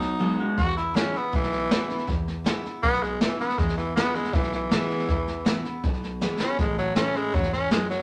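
A raspy, growling tenor saxophone takes an up-front solo from 0.6 seconds in this rollicking, upbeat rockabilly excerpt, its bright tone carrying a light vibrato over a brushed drum kit with a boomy kick and a fill near 6.2 seconds. A twangy, slightly broken-up electric guitar riff opens the clip before dropping out at 0.6 seconds, while a full-bodied picked dreadnought acoustic guitar and a woody, thumpy pizzicato upright bass fill out the accompaniment. The band moves from B to E and then to A, all set in a moderate studio reverb.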